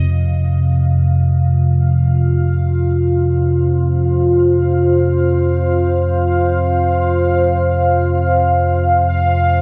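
A deep, rumbling drone sits up front from the start, its dark triangle-and-sawtooth tone swelling in slowly and sustaining low in the register to set an ominous, vast mood for this dark ambient piece in free time. Around it, a bubbling sawtooth texture with resonant, random filter steps fades in from 0.1 seconds, floating high and faint with chorus and shimmer reverb. At 2.1 seconds a moody pad enters, also up front, blending detuned unison sawtooths with a sine sub octave under chorus and shimmer for a thick, shadowy body of sustained chords. The harmony rests on F5 before shifting to Db at 9.1 seconds. Everything sits in a wet cathedral reverb with a 5.9-second decay, and the passage ends as it was cut from a longer piece.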